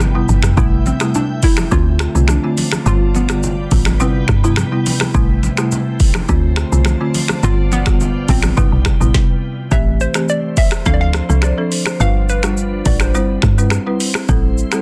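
A dense, heavily limited modern mix with light reverb frames this hypnotic, smooth afrobeats excerpt, driven by an up-front, overdriven electronic kit with a deep kick, woody snare, metallic hats, finger snaps, rim clicks, shaker and toms, over a punchy, percussive log drum bass. A dry, rustic folk marimba played with medium hard mallets and a glassy, ethereal FM pad with ensemble chorus move through a looping Cmaj7/G, Am7, Dm7, G7 progression, while bright, damped congas sit in the background until 8.7 seconds. From 0.6 seconds a hollow, bouncy, detuned square-wave pluck carries the melody through chorus, digital delay and plate reverb, and the groove briefly stops at 9.1 seconds before the passage repeats.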